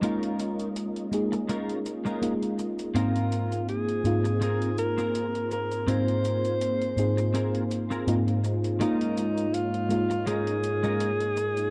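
Vaporwave in Ab major at 82 BPM, this dreamy, nostalgic fragment of a longer piece moves in 4/4 with a light swing on the sixteenths. A mellow FM electric piano sits up front with a round, warbling tone under analog chorus, while a soft string machine holds silky, slow-blooming chords in the background through ensemble chorus. A clean electric guitar picks a compressed riff, filtered and smeared with tape echo, and a sampler-style electronic hi-hat and cabasa tick quietly beneath. At 3.0 s a warm alto saxophone enters with a soft subtone and vibrato, playing a jazz-style solo melody roughened by vintage 12-bit grit and tape echo. The harmony drifts between Db69 over Ab and Ab69, all wrapped in light reverb and a dark, cassette-tinged production.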